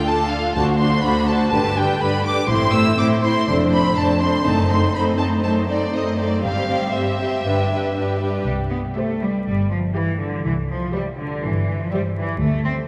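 Up front, a rich, focused violin section carries the melody of this cheerful, lively classical-period movement for string orchestra in C major at 122 BPM, with a second, expressive violin line, smooth-topped violas and clear, even cellos beneath, woody double basses joining at 0.5 s, all bowed with vibrato in a church reverb touched by vinyl crackle, as chords pass through a diminished harmony before settling on C.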